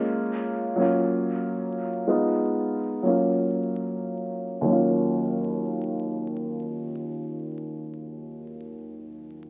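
An echo-heavy mix dusted with vinyl crackle gives this short cut from a longer hip hop piece a tough, gritty atmosphere. At 93 BPM in 4/4, with a light 56% swing on the sixteenths, it sits in Eb minor and is tuned to A4 = 439 Hz. A woody, vintage upright piano carries the accompaniment from 0.0 to 9.5 seconds, placed up front and ranging from Eb2 to F4, its smooth tone and long sustain coloured by cassette tape and trimmed by high- and low-pass filtering. Over the first 4.7 seconds a filter sweep shapes the piano as it moves through Bbm7, Gbmaj7, Abm6 and back to Gbmaj7. A second section follows from 4.7 to 7.2 seconds, keeping the tough, gritty mood.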